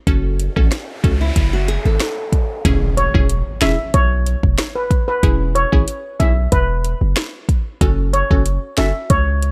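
This dancehall excerpt moves at 93 BPM in a straight 4/4, summery and bouncy in E major, with chords shifting from F#m to E6 and back to F#m near the end. An electronic afro-pop kit sits up front from the start, its deep kick, sharp snare, rim click and metallic hats driving the groove, while a hard-hitting 808-style bass, punchy and heavy with a fast attack, anchors the low end. A crisp, detuned wavetable chord stab with a wave-folded, plucky filter and a moving notch fills in the harmony, pumping against the sidechain. A fingerpicked nylon-string guitar adds bright classical arpeggios briefly from 1.2 to 2.6 seconds, as an electronic noise sweep leads into an impact at 2.7 seconds. From 3.0 seconds a shimmering steel pan, struck with medium rubber sticks and carrying a tape echo, takes the lead melody in a boxy small-room tone, and the mix overall stays dry and close.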